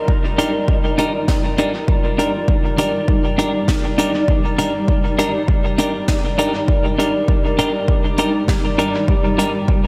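A punchy, overdriven electronic kick drum anchors this hazy, peaceful ambient dub excerpt at 100 BPM in 4/4, with a light 16th-note swing and a jazz brush kit of hi-hat and snare sitting far back in the mix, its airy small-room sound trailing dub echo. A granular cloud pad holds a single F13sus4 chord from the very start, its mellow, blurred, evolving texture built from wave-folded triangle tones with a slow attack, long release and its own reverb. Clean electric guitar stabs enter at 0.4 seconds, fingered and compressed, with their own dub echo repeating each hit. The kick, pad and guitar all sit up front, while a moderate, lush hall reverb soaks the whole mix in a dreamy haze. The passage is cut from a longer piece and holds one steady section throughout its roughly ten seconds.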